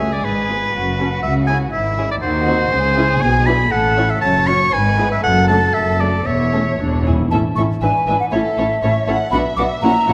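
A moderate scoring-stage reverb lends this spirited, lively classical-period orchestral passage, cut from a longer movement, a sense of space, with a quick pulse in two and a flexible, rubato feel. Muted, con sordino string sections carry the music: a veiled studio violin section holds the melody in the background, a distant chamber violin section adds a second line, and a lush symphonic viola section fills in the accompaniment, all bowed with vibrato. Beneath them, a close cello section and a soft-attacked double bass section share a dark bass line. Up front, a bright solo oboe with light vibrato sings its own line until 6.8 s, when timpani struck with hard mallets deliver a short, articulate fill. At 7.3 s the second section opens and a hollow, airy concert flute with a crisp attack takes over the upper line, close and forward above the subdued strings.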